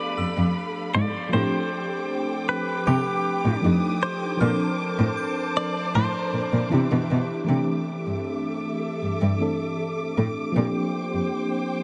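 A tender, dreamy R&B excerpt opens with a twangy, compressed clean electric guitar carrying the melody through phaser and tape echo, over a mellow FM electric piano with tremolo and a lush bowed string section holding sustained chords. A close, intimate cello plays the bass with vibrato and airy sul tasto bowing, while a crystalline synth bell with chorus glints in the background until 5.9 s. The guitar stops at 6.7 s, leaving piano, strings and cello for the second section from 7.5 s, all bathed in a huge ambient reverb that gives the mix a hazy, soaked softness.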